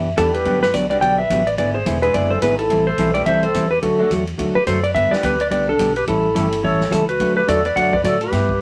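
A brisk 214 BPM swing in 4/4 drives this short, down-home western swing passage in G major, cut from a longer piece. Up front, a clean, compressed lap steel guitar carries the melody with slide and volume swells, its tone dark and fingered, while a distant, roomy clarinet adds a second line from 0.2 s with subtone and vibrato in a jazz style. A hollow-body jazz guitar supplies clean, fingered accompaniment, and a bright upright piano sits in the background with a brilliant, woody tone, short sustain and audible action noise, stopping at 7.6 s. Underneath, a thumpy pizzicato upright bass with steel strings anchors the low end, and a natural-sounding big-band drum kit swings on hi-hat, ride, a medium-tuned snare and a punchy kick. The harmony moves from Gmaj7 through E7, Am7 and D back to G, then A7 to D, all set in moderate studio reverb.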